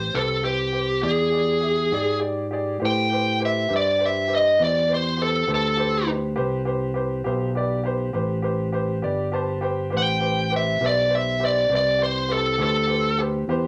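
A dark, overdriven lead guitar sits up front in this smoky, soulful slow blues excerpt in A minor at 68 BPM in 12/8, stating the melody over Am7 and E7#9 changes before breaking into a solo at 2.8 seconds as the harmony returns to Am7, while a clear, woody, slightly detuned upright piano with long sustain accompanies and adds a brief fill at 9.0 seconds, a round, punchy fingered electric bass anchors the low end, and a wet studio reverb surrounds the mix.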